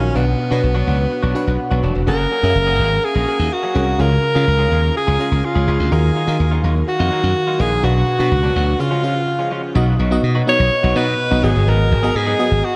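A bright alto saxophone carries the melody over FM electric piano, slap bass and clean electric guitar from the very start of this nostalgic, uplifting pop excerpt at 125 BPM in a straight 4/4, moving through Bm, F#add9, C# and D#madd9 before a break at 8.8 s and a new section from 9.8 s on B and G#m7. The saxophone sings up front with light vibrato through shimmer reverb and delay, while the punchy, glassy slap bass sits loudest and direct beneath it, and the electric piano adds a bell-like, decaying accompaniment with chorus and shimmer. The picked, compressed guitar riff stays in the background, washed in lush chorus, shimmer reverb and delay, and the whole mix rests in a dark production with a moderate, lush hall reverb.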